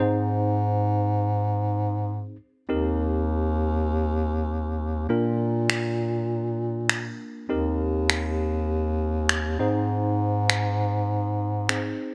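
Dance-pop with an upbeat, summery mood, cut from a longer piece, where a punchy, up-front bass clarinet carries the bass line with vibrato and a jazz-style solo feel beneath a worn, slightly out-of-tune tine electric piano, and layered electronic finger snaps enter at 5.7 seconds, all in a dry, bright 1980s-style digital production.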